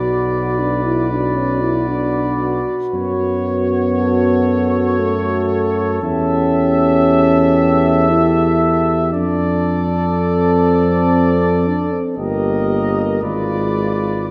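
A hymn-like classical passage for brass band opens with every part sounding together at a slow, rubato 58 BPM in 3/4, its mood melancholic and yearning. A clear trumpet section carries the melody with light vibrato, while a distant, roomy flugelhorn sings a second line beneath it. A trombone section with light vibrato sits in the background as accompaniment, joined by a mellow euphonium with a smooth top, and a warm tuba holds the bass up front. The harmony begins in F# minor and turns toward D minor from 6.0 s, moving through a chord sequence that ends on a diminished seventh as the fragment breaks off at 14.3 s. A wet recital-hall reverb surrounds the ensemble in a spacious, resonant acoustic.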